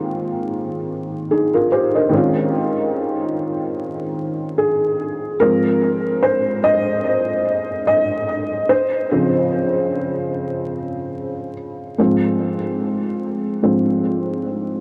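A felt-muted upright piano plays alone from the first second, its boxy, dark tone carrying audible action noise and sitting up front, colored by cassette tape, a low-pass filter and a diffuse ambient delay. This mellow, dreamy hip hop excerpt moves at 73 BPM with a gentle 16th-note swing in Ab major, drifting between Ab6/9, Dbmaj9 and Dbmaj7 chords before settling on Ab6 at 12.0 seconds. A huge, reverb-soaked space and vinyl crackle wrap the whole mix in a dreamy haze.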